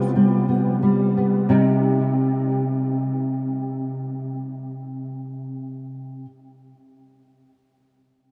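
This romantic piece for solo classical guitar is a short fragment lifted from a longer work, and its mood is wistful and passionate. A nylon-string guitar carries everything alone from 0.0 to 6.3 seconds, its dark, thumb-plucked acoustic tone sitting up front in the mix, with an ensemble chorus and delay thickening its sound. The opening slows down over its first 1.5 seconds, moving from a G7/C chord onto C minor as a new passage begins. The guitar stays in a low-to-middle register, from C3 to F4. A huge ambient reverb with a long 6.8-second decay soaks the whole recording, giving it a dreamy, wet atmosphere.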